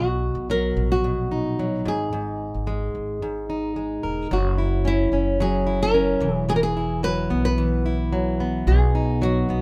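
A dry recording with little reverb opens this short excerpt of reflective, wistful acoustic pop at 110 BPM in a straight 4/4, cut from a longer piece. A fingerpicked flamenco guitar carries the melody up front, while a plugged-in jumbo steel-string acoustic guitar with old strings fingerpicks a full-bodied accompaniment over a pizzicato upright bass with a dark, woody tone. All three play throughout, moving from Bmaj7 and G#5 into a second section around 4.3 seconds that passes through F#5 and Esus2 before settling on B.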